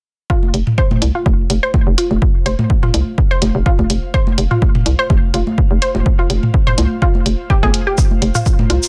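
A hollow, knocking FM bass sits up front in this short cut from a longer minimal techno track, its bouncy, punchy notes ranging from F1 to C2, thickened by tube saturation and sidechain pumping. The mood is sparse and quirky at 125 BPM in 4/4, with a 54% swing on the 16ths and tuning at A4 = 442 Hz, all resting on an F5 chord. A dry, analog kick drum lands from 0.3 seconds, tape-warmed electronic congas and toms carrying tape echo follow at 0.4 seconds, and electronic hi-hats and shakers, layered and re-recorded in a large room, join at 0.5 seconds. A juicy, squelchy blip pluck plays the riff between F4 and C5, its resonant filter and detuned square, saw and triangle waves given chorus, tape echo and sidechain pumping. Behind it, an airy, breathy pad with a noise layer and ring modulation fades in from 0.3 seconds, mellow and full-bodied, spanning F4 to Bb5 with chorus and its own pumping. 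The mix is nearly dry, with little reverb, and the master is dense and heavily limited.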